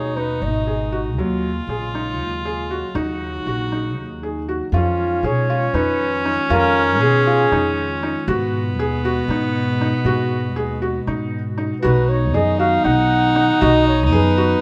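A studio sound with moderate reverb frames this urgent, hypnotic chamber piece in 7/8 at 236 BPM in eighths, where a breathy, whispered flugelhorn with light vibrato and scooped notes carries the melody in fragments that return at 4.8 and 11.8 seconds, over a dark, sul tasto viola second line with an airy bow, soft arpeggios from a felt-muted upright piano, a woody, thumpy pizzicato upright bass up front, and a warbling, lo-fi tape-like pad of detuned, nostalgic sustained chords with chorus in the background, moving from Abm7 through Ebm11 and Fm7b5 to a closing B chord.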